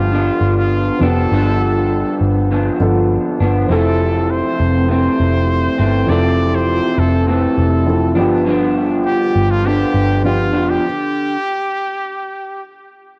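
This nostalgic, laid-back slice of indie bedroom pop opens with the full band at once: a bright trumpet carrying the melody over electric guitar, upright piano and bass at a relaxed 101 BPM in a straight 4/4. The trumpet sits present and solo-like, pop in style with a light vibrato and a subtle chorus. Up front, the guitar comes through a small old amp, sounding dark, slightly broken-up and compressed, its analog chorus and warbly pitch drift adding a lo-fi wobble. The bass is round and punchy, foam-muted and driven through tube saturation, while the upright piano stays in the background, woody and slightly detuned with audible action noise. The harmony moves from G7 to Fmaj7 and back, all of it soaked in cassette character and a small-room reverb that gives it a homemade, intimate feel. Near the end the band drops out, the bass stopping at 10.8 seconds and the guitar at 11.4, leaving the trumpet alone until 12.6 seconds in this cut from a longer piece.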